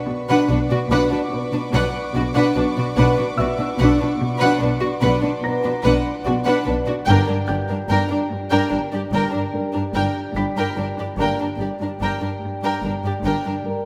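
Heard through a wet scoring-stage reverb, this eerie, tense suspense cue in B harmonic minor moves at 73 BPM in 5/4, as a glassy, ethereal glass harmonica holds sustained chords over a distant cello riff, floating sul tasto violins carry the melody, a second line and a high texture that ends by 6.6 s, a dark, woody viola section and an intimate studio cello section accompany, a rich double bass section anchors the low end, a felt-muted upright piano adds a soft, muted texture, and a mellow French horn section joins at 1.3 s with sustained chords as the harmony shifts from Bm to Gm at 7.1 s.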